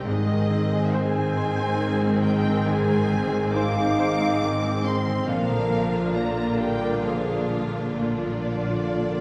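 A tender, uplifting cinematic film-score fragment in a slow, rubato 6/8 at 46 BPM opens with a rich, expressive violin section singing the high melody over a clear, intense second violin line and an airy flute ensemble, while a bright concert grand piano, a lush viola section with portamento, very quiet ringing harp arpeggios, a dark, smooth double bass section and a very quiet cello section fill out the texture, and mellow French horns sustain chords from 0.1 s as the harmony moves from Ab to Bb at 5.3 s, the whole orchestra heard from further back in a reverberant recital hall with vinyl crackle.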